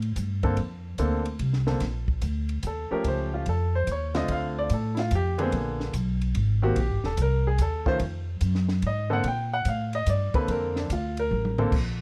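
Sophisticated and swinging, this brief jazz piano trio excerpt in Bb major moves at 145 BPM in a swung 3/4, with a woody pizzicato upright bass up front, a compact cocktail drum kit with a high-tuned snare and punchy kick in a small, dark-sounding room, and a natural, short-sustained baby grand piano bathed in plate reverb that takes a solo from 1.8 seconds over altered and extended chords before a drum fill at 11.3 seconds, set within a dark, warm, lightly reverberant production.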